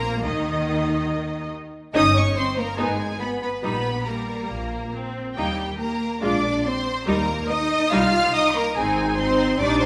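In a straight, quick four-beat pulse, this cheerful, spirited classical-period movement for string orchestra moves briskly from a chordless opening through Eb7/G, a darker Abm, Bbsus2 and Bb7 before settling on Cm and Ab. The full ensemble plays throughout the passage, which is cut from a longer piece. Up front, the first violins carry a smooth, even melody with vibrato in a high register. Beneath them, a focused second violin line and an intense, bright viola accompaniment add lush inner motion. The cellos shape the bass with expressive portamento, while the double basses give a close, symphonic foundation below. A wet scoring-stage reverb bathes the orchestra in a spacious sound.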